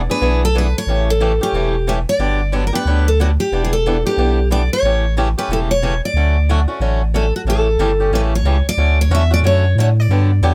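A bright, full-bodied steel-string guitar carries a picked melody with audible finger squeak, over a deep, round sub bass that sits up front from the very start. A boxy swing-style acoustic guitar with fresh strings joins at 0.1 s as picked accompaniment, moving through seventh chords from E7 and A7 toward Dmaj7 in a lively, swinging jazz manouche feel. The close, detailed recording carries little reverb, and this short cut from a longer piece shifts into a new section at 7.5 s.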